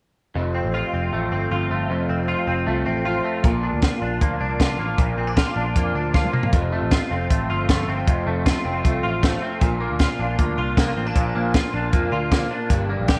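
A breezy, youthful slice of jangly indie pop opens with an electric guitar through a small old amp, bright and slightly broken-up with a phaser, joined almost at once by a direct-recorded clean electric guitar playing twangy, compressed arpeggios up front, colored by ensemble chorus and tape echo. A vintage muted picked electric bass enters with them, its foam-muted tone round and dark, moving through F and Bb chords in Bb major at a straight 156 BPM in 4/4. At 3.4 seconds a compact cocktail drum kit arrives with a high-tuned snare, punchy kick, hi-hat and toms, its sound smooth with a rolled-off top and placed close to the listener. A drum fill from 6.1 to 6.5 seconds leads into a second section where the same harmony returns, and the full group plays on until the cut at 13.2 seconds. A moderate plate reverb gives the studio sound a gentle sheen, and the piece is an excerpt from a longer track.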